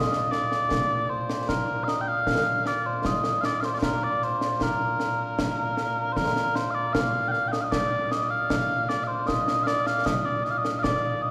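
A reverberant church acoustic surrounds this short cut from a longer piece of ceremonial, stirring Scottish pipe music in a straight 2/4. Mellow, sweet small bagpipes carry the continuous solo melody with vibrato from the very start, spanning a deep low register up to high notes. An up-front acoustic pairing of concert snare drum and concert bass drum with bright cymbals joins at 0.1 seconds and plays until 11.0 seconds, with the same opening strain repeated after 3.0 seconds.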